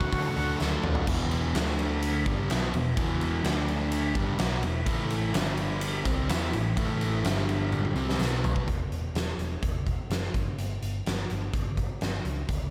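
A huge, up-front arena drum kit with a fat snare and punchy kick drives this gritty, swaggering classic rock excerpt, adding drum fills along the way, while a dark, round hollow-body bass plays underneath throughout. Two overdriven guitars, one playing a riff with slapback echo and a sludgier distorted one, sit in the background and stop at 8.7 seconds, leaving the drums and bass to carry on. A thick tonewheel organ through a slow rotary speaker sounds only a brief opening note, a very quiet, jingly tambourine taps briefly at 0.6 seconds and returns from 5.1 seconds, and lush hall reverb gives the whole a big arena sound.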